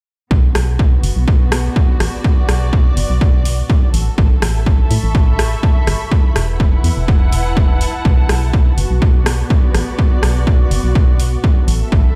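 This piano house excerpt carries a bittersweet, soulful mood over a gently swung groove. An up-front, punchy electronic kick drives the track from 0.3 seconds, its overdriven analog thump joined by a drum machine's gritty hi-hat and rim click from 0.6 seconds. Beneath it, a hollow, organ-like FM bass with a fast, percussive attack and a dark decay pumps against the kick. A muted string section, veiled and bowed con sordino with light vibrato and soft attacks, adds a shadowy ensemble texture that also breathes with sidechain pumping. The harmony moves from Bm through A69 and Esus4 to Bm7, and the sound has little reverb of its own, though the whole mix carries the stony ring of a bare room heard through a big sound system.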